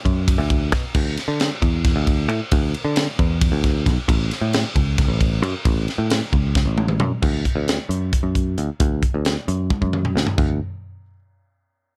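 A dark production with light reverb frames this short math rock and midwest emo excerpt, a playful, bright passage in D major moving in 7/8 at 267 BPM counted in eighths. A growly, direct picked electric bass sits up front beside a crisp fusion drum kit with bright cymbals, a high-tuned snare and a tight kick, the pair running from the opening moment to about 10.5 seconds. Drum fills mark the turns at 6.6 and 9.7 seconds as the music shifts into new sections.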